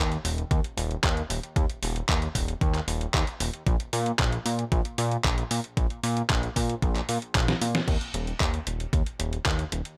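A dry, close sound with little reverb frames this short italo disco excerpt, which moves at 114 BPM in a straight 4/4 and carries a bittersweet yet danceable mood. A fat analog bass sits up front, its thick, nasal tone blending sawtooth and square waves, detuned and saturated, with a fast-attack filter pluck and sustained notes ranging from Eb1 to Bb2, touched by a digital delay. A detuned 8-bit digital drum machine, overdriven and sampler-style, supplies crash cymbal, handclaps, hi-hat and a medium-tuned snare, sounding as if re-recorded in a small room and placed prominently. Alongside it, an overdriven electronic kick drum adds a thumpy pulse from about 0.5 seconds. A drum fill at 7.5 seconds leads into a new section at 7.9 seconds that carries the groove to the end of the cut.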